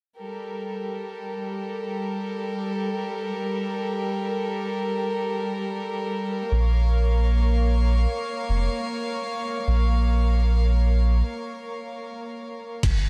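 A rich chamber string ensemble opens this dark, hypnotic trip hop piece at 0.2 seconds, holding bowed chords with light vibrato, an earthy body and a smooth top, moving from Gmadd9 to Bbm. At 6.5 seconds a deep, round dub sub bass enters under the strings. A gritty, compressed, pitched-down sampler drum kit with a thumpy kick and crash cymbal arrives at 12.8 seconds, all set up front in a dry, dark production.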